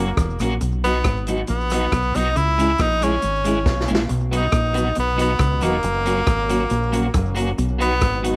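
Upbeat and joyful, this short ska passage in B major at 138 BPM features an edgy, up-front tenor saxophone melody over a dark, clean picked electric guitar with harmonic tremolo, a round, punchy dub bass, a very quiet fingered semi-hollow guitar riff, a natural studio-room drum kit with a punchy kick and a drum fill at 3.7 seconds, and a grainy, bright cabasa, while a lightly overdriven tonewheel organ with key click joins with very quiet stabs at 4.3 seconds, all set in a light small-room ambience.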